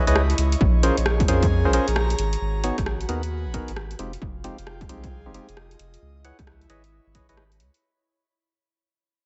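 UK garage in a skippy two-step groove with soulful minor-ninth chords, where hollow, mellow organ stabs with chorus and delay ride over a thick, saturated sub bass, an airy, breathy pad pumps softly beneath, and an overdriven analog drum machine's hi-hats and rim clicks join a punchy kick that enters at 0.6 seconds, all within a light reverb as this short excerpt fades out.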